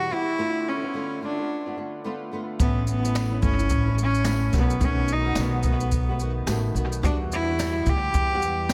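A rich, biting cello carries the melody up front in this heartfelt, easy-going acoustic pop excerpt, its bowed single line earthy with a smooth top and trailed by dub echo. Beneath it, a fingerpicked flamenco guitar, double-tracked and also touched with dub echo, plays the accompaniment with audible finger squeak, and the two open the piece together. At 2.6 seconds a woody pizzicato upright bass and a brushed jazz kit arrive, the kit pairing a high-tuned snare with a boomy kick and a shaker, and a jingly tambourine sits in the background from 3.2 seconds. The groove moves at 108 BPM in 4/4 with a gentle sixteenth-note swing, centred on A mixolydian as the chords pass from Dm6 through A and B7 to Emadd9. Light reverb and a small room ambience frame an echo-heavy mix.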